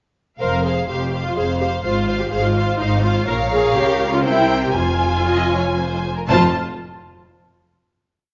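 Dramatic and stormy, this brief, quick classical-period piece for string orchestra in F minor and 3/4 moves with rubato at 115-127 BPM, as an expressive, up-front violin section carries the melody over a smooth, even second violin line that answers at phrase ends, a close viola section gliding with portamento, and focused cellos and double basses doubling a sustained bass line, all bowed with vibrato in a lush recital-hall reverb before a final chord from 6.3 seconds.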